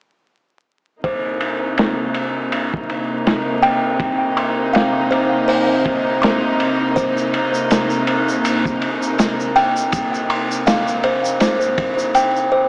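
Smoky and hypnotic, this trip hop excerpt at 81 BPM in C minor rests on a single Cm7 chord, with a soft, floating string section holding sustained chords under delicate, tinkling music box arpeggios that carry sampler grit and analog delay, while a crunchy, dark-toned breakbeat kit with rolled-off cymbals drives a swung groove and a faint egg shaker joins at 7.0 seconds, all in an echo-heavy mix flecked with vinyl crackle and a small-speaker tone.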